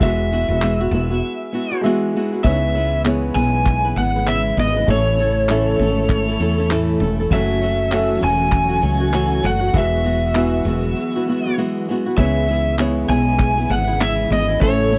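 Acoustic pop at 99 BPM with an easy-going, sunny lilt and a swung sixteenth feel, cut from a longer piece. An overdriven slide guitar sits up front with the melody over bright fingerpicked flamenco guitar, a baby grand piano with long sustain in the background, a round, woody fretless bass, and a cloth-damped, thuddy kit of kick, handclaps and tambourine, with brief breaks at 1.2 and 11.0 seconds. A very quiet, lush bowed string section enters at 2.4 seconds with soft sustained chords, and the whole mix has a dry, close 1970s studio sound over chords moving from Eadd9 through C#m7, A and F#m7.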